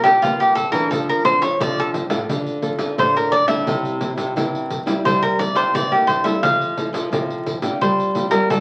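Over a straight 4/4 pulse at 87 BPM, a jingly, compressed and saturated pandeiro drives this sunny, joyful samba-choro fragment in F major, where a crisp, up-front picked cavaquinho solos across the full 8.6 seconds above two fingerpicked nylon-string guitars: a classical-toned one with fresh strings and audible finger squeak on accompaniment, and a small-sounding one carrying the bass. The whole sits in wet club reverb and the crackle of a very old 78 rpm record, tuned slightly low to A4 = 436 Hz.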